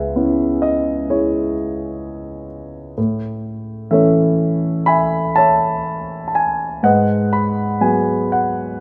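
A concert grand piano opens on a C#m7 chord and carries this short, peaceful classical fragment entirely on its own. The playing is lyrical and tender, moving in a flexible rubato over a gentle four-beat metre. The harmony drifts from C#m7 to Amaj7 at 3.0 seconds and settles on G#m7 at 6.8 seconds, spanning the keyboard from a deep bass register up into the treble. The instrument sounds warm and up front, its bass deep, set within a moderate recital hall reverb that lends a soft halo to each chord. Cut from a longer piece, the passage lasts 8.8 seconds and feels like an intimate, unhurried moment of reflection.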